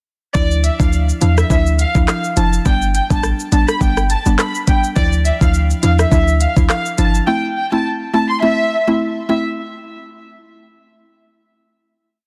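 A lush, bowed violin section carries the syncopated hook with vibrato and portamento through a touch of digital delay in this short, tough and sultry dancehall piece, set over woody, mellow FM plucks that play chorused syncopated chords. Underneath, a deep, boomy 808-style bass rolls out dark syncopated lines while an overdriven, up-front electronic kit lays down a sparse beat of knocking kick, smooth hats, rim clicks, handclaps and shaker. Bass and drums drop out around 7.2 to 7.3 seconds, leaving the strings and plucks to close out: the strings finish at 9.4 seconds and the plucks ring on to 9.6 seconds, all in a dry, dense, heavily limited mix.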